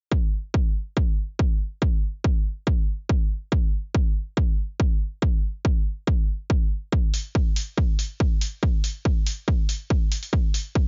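A straight 4/4 techno pulse at 141 BPM drives this dark, hypnotic excerpt, carried from 0.1 seconds by a heavy, layered electronic kick drum whose overdrive gives it a gritty, up-front punch. At 7.1 seconds an analog-toned electronic hi-hat joins, close and slightly boxy from its small-room re-recording, with sidechain pumping on the hats. The sound is dry and dull at the top, with the highs rolled off, keeping the mix murky and claustrophobic.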